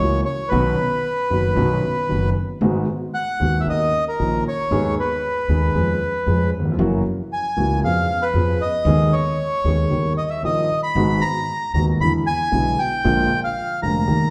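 Tango in G# minor at 115 BPM with a rubato feel, nostalgic and passionate, in which an up-front reedy, dark bandoneon carries the melody over an intimate vintage grand piano with deep bass and audible action noise, while a pizzicato upright bass on gut strings adds a woody, thumpy low line, all set back in a large, wet studio reverb across this 14.3-second cut from a longer piece.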